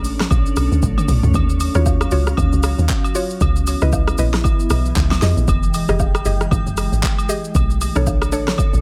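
An echo-heavy digital ambience surrounds this soulful, late-night amapiano excerpt at 116 BPM with a swung 16th feel, where an up-front deep house drum kit with a punchy kick and fat snare plays a fill at 0.8 seconds over a dark, round log drum bass, while a glassy, ethereal FM pad with ensemble chorus holds minor ninth chords from Bm9, close acoustic agogo bells and woodblock with dub echo enter at 0.3 seconds, and a woody, mellow mallet-like synth pluck with chorus and dub echo adds stabs from 1.7 seconds.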